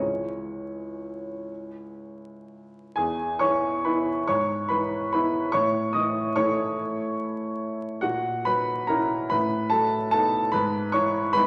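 This short excerpt opens straight away on a warm upright piano playing alone, a classical waltz in 3/4 and E major with a wistful, bittersweet mood. The tempo moves freely between 115 and 152 BPM, and the rubato lets the phrases breathe and bend. The piano sits up front with a woody, natural tone and long sustain, ranging from C#2 up to D#6. It begins on a C#m chord, then at 3.0 s moves into a new section that settles on E before passing through A, F#7/A# and B7/A and arriving on E/G#. The sound is wet with a recital hall reverb, and a vinyl crackle adds an aged, nostalgic texture to the 11.5 seconds cut from a longer piece.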